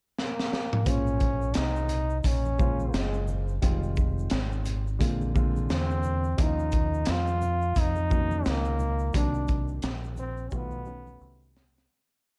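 Jazz-hop at 87 BPM in Bb minor, cool and nocturnal with a swung 16th feel, where a clear, vintage trombone states a motif-based melody over a crunchy, gritty breakbeat kit with a high-tuned snare and sparse quarter-note hats, a round, punchy fingered electric bass walking with chromatic approach notes, a mellow grand piano pushing rootless chords with audible action noise, and loose congas and shaker in the background, before the piece fades out from 9.1 seconds under a closing drum fill at 10.5 seconds.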